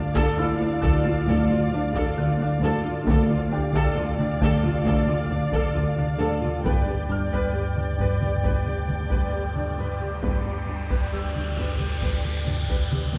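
A wet, cavernous scoring-stage sound, heard from far back in the room, frames this eerie, uneasy cue from a suspense film score in a slow, straight 4/4, cut from a longer piece. Con sordino violins carry a veiled melody high in their range over a second violin line, while a close, muted viola section and a soft-attacked cello section in the background fill the middle and low end, joined from 0.4 seconds by a very quiet, rich double bass section. A buzzing marimba struck with medium mallets repeats a dry, woody riff beneath them, and a felt-muted upright piano adds an intimate, mellow texture. A chorused analog drone built from sawtooth and pulse waves sustains a low D with an evolving, moving-notch colour, and a taiko ensemble played with hard sticks sounds from a live room in the background. The harmony shifts from D minor to G, where a third, higher violin line enters around 6.7 seconds, before an electronic riser begins at 9.0 seconds and a drum fill lands at 12.9 seconds.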